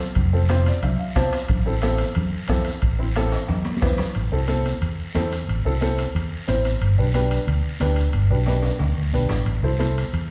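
Set back in a large studio with a wet reverb, this passionate, driving cumbia excerpt moves at 181 BPM in 4/4 with a straight feel in A minor. A dark, round fingered electric bass sits up front and punchy, moving through a chord sequence of F, A minor and G. A woody upright piano with short sustain carries the accompaniment and plays a fill near the start, at 0.5 seconds. A soft-beatered bombo joins in a small-room sound until it drops out at 4.0 seconds. Close, dry congas with a thick-skinned, high-tuned tone play in the background, while ringing metal-shell timbales come across compressed and saturated. A raspy guiro sounds distant, and drum fills mark the move into the second section and again near the close.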